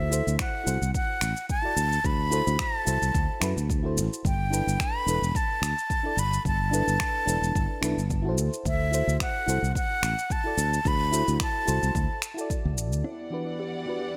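Sunset chillout with a sunny, relaxed mood and a gently swung 4/4 groove, cut from a longer piece. A breathy, close-miked concert flute carries the melody over a soft, round FM electric piano treated with chorus, phaser and delay, while a growly, punchy fretless electric bass sits up front beneath a deep electronic kick and a filtered deep house kit of finger snaps, smooth hats and shaker. At 13.0 seconds a hollow, plucked kalimba adds brief delayed arpeggios under a filter sweep, and at 13.1 seconds a lush, bowed string section with woody vibrato enters on an Em9 chord.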